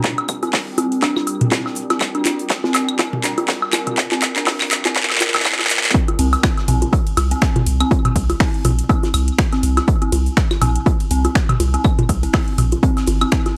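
Minimal techno at 122 BPM in C minor, quirky and clinical, with a punchy overdriven kick, metallic-hatted house kit of snaps, claps and ride, a very quiet gated 80s kit with a fat snare, analog bongos, woodblock, claves and toms through tape echo, and an eerie, inharmonic FM bell riff with chorus and phaser building under a filter sweep alongside a swarming granular drone and a nostalgic lo-fi pad until the drop at 5.9 seconds, shortly after which a deep, saturated sine sub bass enters.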